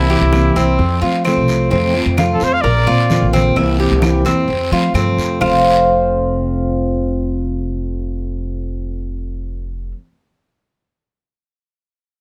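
A clear, punchy trumpet opens this relaxed, danceable excerpt of Cuban son and guajira in F major at 130 BPM, its close-miked pop-style solo with vibrato and scooped notes sitting up front with a touch of plate reverb. Beneath it, a dark, full-bodied dreadnought steel-string guitar is fingerpicked, a metallic double-strung Cuban tres picks arpeggios with some octave-doubled strings, and a growly, thumpy upright bass played pizzicato anchors the low end. Soft-handed congas with a bright, thin skin join in the background, along with woody claves and a raspy guiro, over a straight 4/4 feel and a progression moving through C7, F and Bbadd9. The trumpet drops out at 3.3 s, while guitar, tres, bass and percussion carry on. The percussion stops at 5.5 s as the music moves into a new section, and the guitar continues to the end at 10.0 s, all within a light reverb.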